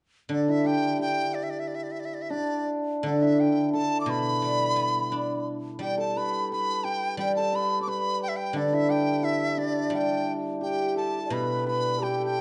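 From 0.3 s the dizi carries a buzzing, airy, chiff-edged melody up front with vibrato and a slightly unsteady tone, over a shimmering hammered dulcimer second line and silvery, ringing guzheng accompaniment plucked with fingerpicks. This pastoral, festive piece of Chinese traditional chamber music moves at 87 BPM in a straight 2/4, in the G gong mode, within a dark, warm recital-hall reverb. At 10.6 s a breathy, mellow end-blown xiao joins with a tongued second line, just before a new section begins at 11.3 s in this short cut from a longer piece.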